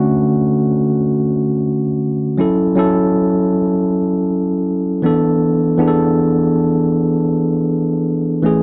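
Silky and cinematic, this brief soul excerpt in free time features a clean tine electric piano playing alone, up front through built-in speakers with light reverb in a dry, close 1970s-style studio sound, moving from Dmaj7 to F#m7 at 2.4 seconds and settling on E7sus4 at 5.0 seconds, spanning D3 to A4 and tuned to A4 = 439 Hz.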